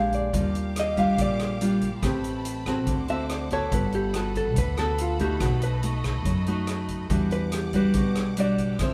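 Bossa nova with a sophisticated, breezy air, this short cut features a dark, clean vintage hollow-body jazz guitar soloing on the melody over an up-front, fingerpicked nylon-string guitar, woody pizzicato upright bass, a distant drum kit of hi-hat, rim click and boomy kick, and a bright, lush bowed violin section that enters at 0.3 seconds with sustained chords set far back, the band playing live together in a stone room with a reverberant sheen as the harmony moves from Ebmaj9 through to Em9.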